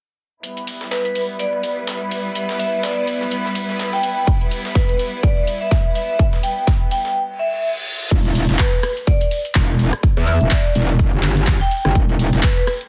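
Aggressive and swaggering, this bass house excerpt at 125 BPM in E minor, with a swung 16th-note feel, opens at 0.4 seconds on clear symphonic strings holding an Em chord under a filter sweep and sidechain pumping, alongside a gritty, pitched-up breakbeat kit sitting in the background with hi-hat and snare. A layered big-room kit adds crash, handclaps, hi-hat and rim click from 0.7 seconds, and from 0.9 seconds a dark, ringing vibraphone with hard mallets carries the melody through 12-bit sampler grit and tape echo. A punchy electronic kick arrives at 4.3 seconds, and after a short break lifted by a reverse cymbal, a distorted, metallic wobble bass with chorus and overdrive joins the mix at 8.1 seconds in a dense, heavily limited, dry mix.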